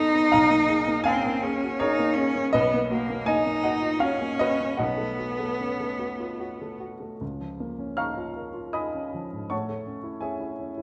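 In a rubato 3/4, this dreamy, luminous impressionist classical duo, cut from a longer piece, pairs a clear, smooth bowed cello melody, sung with vibrato, over a mellow, intimate baby grand piano accompaniment whose dark tone carries audible action noise and short sustain. The cello sings until 6.8 seconds, after which the piano continues alone through the closing section from 7.2 seconds, moving from Cbmaj7 and Cb9 to Db69 and finally Amaj7. A wet scoring-stage reverb lends the dark production a soft, hazy glow.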